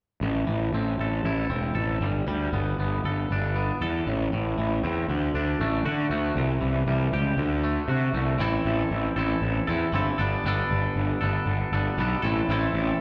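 From 0.2 seconds a twangy, clean electric guitar plays arpeggios bathed in lush chorus, tape echo and slapback echo over a growly, punchy fuzz bass with overdrive, both up front in this brooding, dark rock fragment from a longer piece, heard as a live gig through the venue's PA with club reverb, while the chords move from Am through Gadd9, D and C before returning to Am at 12.2 seconds.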